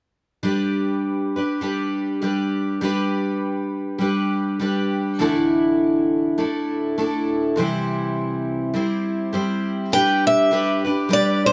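Gentle and nostalgic, this short cut from a longer acoustic folk piece has the intimate feel of a duo or small band, moving in a relaxed, swung four. A picked twelve-string acoustic guitar carries the accompaniment from the start, its octave-doubled strings giving a shimmering, auditorium-sized body, with a finger squeak audible in the playing. The harmony travels from G to Dsus2 and on to C before settling back on G. At 9.9 seconds a picked steel-string acoustic guitar enters up front with the melody, its parlour tone bright and boxy, sitting a touch above the accompaniment in level. A moderate small-room reverb lends the recording a natural, intimate sense of space.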